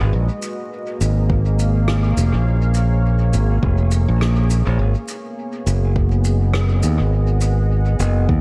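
Meditative and deep, this ambient dub excerpt moves at 103 BPM in 4/4 with a 16th-note swing, as a dark, full-bodied pad with chorus and built-in reverb sustains A#m7 and then G#m7 at 4.8 seconds beneath a bright, punchy fingered electric bass that sits up front. A natural-sounding shaker and rim click with dub echo enter at 0.4 seconds, and a layered, tape-tinged electronic kick joins at 1.3 seconds. The whole sits in a small room with an echo-heavy mix and a veil of vinyl crackle.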